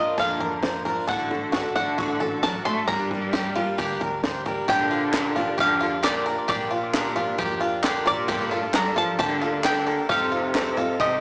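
A blown-out, overdriven recording with a small-speaker sound and moderate studio reverb frames this uplifting, hopeful indie folk excerpt in Bb major, moving at 133 BPM in a straight 4/4 with a building arrangement. A twangy bluegrass banjo carries the melody through tape echo over a second, brighter banjo playing arpeggios, a shimmering octave-doubled twelve-string guitar with audible finger squeak, and a full-bodied fingerpicked jumbo acoustic that drops out at 1.1 s. Underneath sit a round, hollow-body electric bass, a distant bowed cello line rich with vibrato and portamento, and a dark, compact cocktail drum kit with a punchy kick and high-tuned snare, while crisp, saturated group handclaps join in the background from 5.1 s.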